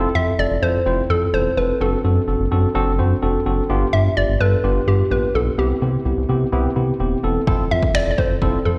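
Heard through a venue's PA with a recital-hall reverb and a light digital ambience, this carefree, upbeat dance-pop excerpt moves at 127 BPM in C major, tuned slightly flat to A4 = 435 Hz, and cycles through Fmaj7, D7/F#, G7 and Cmaj7. A barky, worn tine electric piano that is a touch out of tune accompanies through a combo amp over a round, dark analog bass, both pumping under sidechain compression, while a hollow, bouncy square-wave pluck enters at 0.2 s with a detuned chorus, digital delay and slapback echo. A deep house kit of finger snaps and a punchy, overdriven kick arrives only at 7.5 s and stops at 8.5 s.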